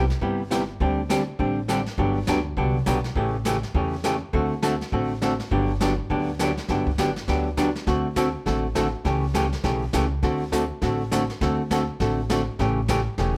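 Down-home and swinging, this brisk western swing excerpt sets a dark, clean, up-front archtop guitar picking its accompaniment over woody pizzicato upright bass and an airy brushed jazz kit with a boomy kick, moving from Cmaj7 through dominant chords like A7 and D7 in a modest studio room with a faint mains hum.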